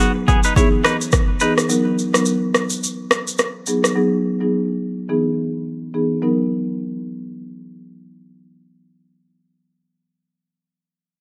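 Light reverb and a small-room ambience surround this sunny, joyful afrobeats fragment, which carries the faint smear of lossy compression artefacts. At 106 BPM in B major with a swung 16th feel, a bright, twangy clean electric guitar picks a short riff with tape echo in the first 1.5 seconds. Meanwhile an up-front, overdriven electronic drum kit of deep kick, rim click and shaker runs until 4.0 seconds, and a woody rosewood marimba with a vintage, band-limited tone carries the accompaniment through G#m7, Emaj7 and Bmaj7 to the end.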